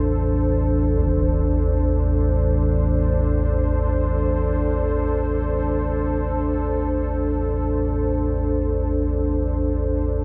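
Dark ambient drone in free time and A minor, this cavernous, unsettling fragment of a longer piece rests on a single Am chord under a huge ambient reverb. A deep, rumbling drone of triangle and sawtooth tones, with slow attack, long release, phaser and lush chorus, sits up front for the full 10.2 seconds beside a moody, detuned analog pad that holds sustained chords with a sub octave and a mellow chorused sheen. At 1.0 seconds a single huge, bright impact sounds very quietly beneath them.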